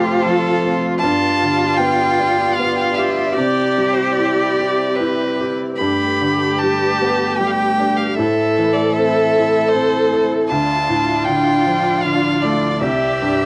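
A haunting, longing Celtic slow air in 3/4 at a rubato 76 BPM opens with a clear, focused solo fiddle carrying the melody with light vibrato up front, joined from the start by a rich, smooth cello second line, a soft felt-muted upright piano with audible action noise, and a lush symphonic string section sustaining chords in the background, the last three colored by cassette tape, all set in a moderate booth ambience on a home cassette recording as the harmony moves from F through Cadd9 and Am to a closing C at 12.8 seconds.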